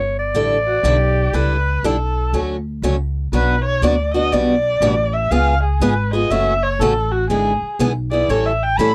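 A dark, bowed erhu with vibrato and portamento takes a solo from 2.3 s in this playful, lively snippet of acoustic string swing, after a raspy, growling clarinet opens the melody and stops at 1.8 s, while a bright, boxy picked parlour guitar entering at 0.3 s and a woody, thumpy pizzicato upright bass on gut strings carry the swung accompaniment in a dry, close 1970s-style studio sound.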